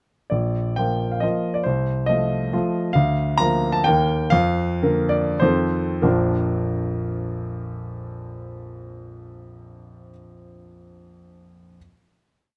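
A lilting triple-time pulse with dotted rhythms drives this short, complete romantic dance for solo grand piano, played with a flexible rubato feel. The mood is proud and graceful, carried by a single-line melody over bass and chords that place their stress on the second or third beat. The music slows from 2.3 seconds onward as the phrase moves toward its close, settling at 6.0 seconds onto a final chord, with the piano's sound lasting until 11.8 seconds. The instrument sounds warm, polished and up front, spanning from deep bass to bright upper notes. Close, detailed miking keeps every note present, with a light reverb adding a touch of space.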